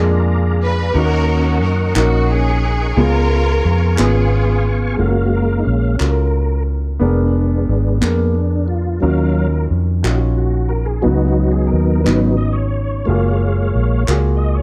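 Slow, uplifting and soulful gospel at 59 BPM in 6/8 and F# major, with a woody upright piano and a clean tonewheel organ through slow rotary speaker and chorus vibrato laying down chords above a round, punchy, foam-muted electric bass up front, while a lush bowed string section carries an expressive melody with vibrato and portamento from 0.6 to 5.0 seconds, crisp, band-limited group handclaps join at 2.0 seconds, and the organ takes a solo from 5.0 seconds, all set in a dark production with light reverb and small room ambience.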